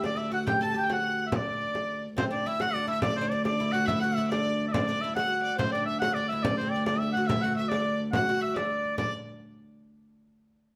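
Festive and rustic, this medieval dance moves in a straight 6/8 at 141 BPM in D mixolydian, with a clear, up-front shawm carrying the folk-style melody with vibrato and a soft attack. A bright, woody oud plucked with a plectrum and a rich, distant bowed fiddle play second lines alongside it, while a viola da gamba holds an airy, ringing D drone and a small frame drum adds hard-handed percussion. The band plays live in a wet stone room, and the music shifts into a new section at 2.2 seconds.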